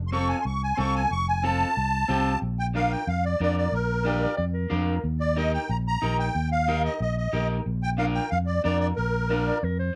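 Festive and danceable, this brisk Latin excerpt at 183 BPM in Bb major opens with a shimmering, reedy musette accordion taking a solo turn on the melody for its first 2.4 seconds over a punchy fingered electric bass and a dark, picked electric guitar at the edge of break-up, before a smooth clarinet with vibrato and scooped notes adds a jazz-style second line at 4.1 seconds, all in a light reverb as the chords move from F through Bb and Eb.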